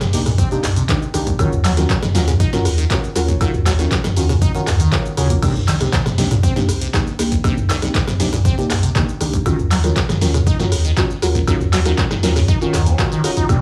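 A squelchy, resonant sawtooth acid bass riff opens this gritty, hypnotic acid house excerpt at 119 BPM in straight 4/4. An up-front analog drum machine plays alongside it from the start, with a punchy snare, handclaps, hi-hat, rim click, cabasa, woodblock, toms and crash cymbal, with a short room on the snare, clap and hats. The acid line sounds smooth and mellow beneath its filter sweep, coloured by phaser, tube saturation, lush chorus and digital delay. Dark, detuned chord stabs enter at 0.1 seconds, soft and wave-folded with chorus, 12-bit sampler grit and delay, moving between Cm7 and Ebm7. A round sine sub bass also arrives at 0.1 seconds and pumps with sidechain, and a punchy electronic kick joins at 0.4 seconds. Both drum parts sit in a light small-room ambience.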